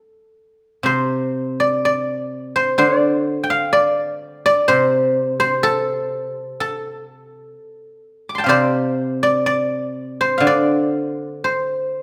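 A moderate recital-hall reverb, about 1.7 seconds long, surrounds a solo guzheng that sits up front, its fingerpicked strings ringing with a silvery, warm tone across a range from C3 to D6. This traditional Chinese plucked-string piece unfolds in a rubato 4/4 around 62 BPM in the D yu mode. Its mood is longing and contemplative throughout these 12 seconds cut from a longer work.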